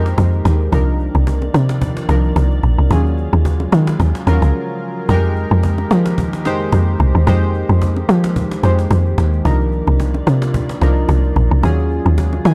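A swung sixteenth-note groove in four drives this late-night, soulful amapiano excerpt, anchored by a woody log drum bass that sits up front with a punchy, fast attack, a decaying tail and a noise layer. Beneath it, a snappy acoustic cajon with snares rings in a live room, while very quiet bongos and congas add close, acoustic texture. The warm analog keys carry the accompaniment with round pulse and sawtooth tones, an evolving filter sweep and chorus, moving through the chords Fm11, Cm11 and Ebm11. In the background, a glassy FM pad holds ethereal, warbling, vintage chords with a slow attack and long release, thickened by ensemble chorus and its own reverb. A brief break arrives at 4.5 seconds, and a short keys fill appears at 12.2 seconds, all set in a dark small-room production.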